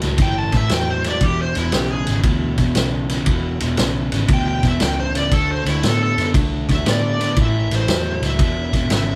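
Gritty and soulful, this brief electric blues shuffle at 117 BPM swings in 4/4 as a crunchy overdriven rhythm guitar riff and a round, foam-muted vintage fingered bass ride over a saturated vintage drum kit of tight kick, medium-tuned snare and dark ride cymbal, while a bright, smooth overdriven lead guitar carries the melody from 0.2 seconds through an A7 to E7 to D7 turn, all captured as a band playing live in a small room with moderate reverb.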